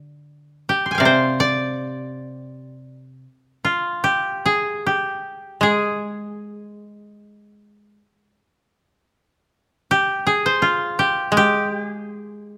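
A woody, fingerpicked koto carries the melody from 0.7 s, set up front above a second koto whose low accompaniment sounds from the start, in an austere, calm passage of Japanese traditional chamber music at a rubato 80 BPM in 4/4 that moves into a new section at 5.6 s, captured with close, detailed microphones in a moderate recital-hall reverb and cut from a longer piece.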